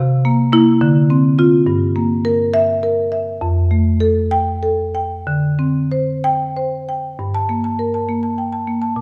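Reflective and hypnotic, this short fragment of a contemporary classical piece for solo marimba unfolds in a flexible, rubato 6/8 across the instrument's deep low register up to its bright upper bars. The medium mallets draw a warm, woody tone from the rosewood bars, placed up front and bathed in the lingering reverb of a recital hall. Shifting harmonies pass from C7 through Gm6 and Fadd9 to a suspended D7sus4 before a new passage opens on Gmadd9 at 7.2 seconds.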